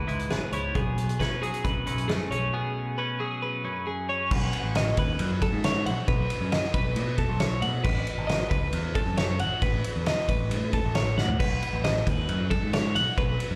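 Math rock and midwest emo at 135 BPM in 4/4, intricate and wistful, this live club excerpt opens with two clean, compressed twelve-string electric guitars, one warm with spring reverb playing accompaniment that stops at 6.1 seconds, the other bright and twangy spinning high arpeggios through digital delay and slapback echo, over a growling overdriven picked bass and a loose, roomy indie drum kit with dark cymbals, a fat snare and punchy kick that lands a fill at 11.2 seconds, as the chords move from C#m7 and Bsus2 through B9 and Aadd9 to B13.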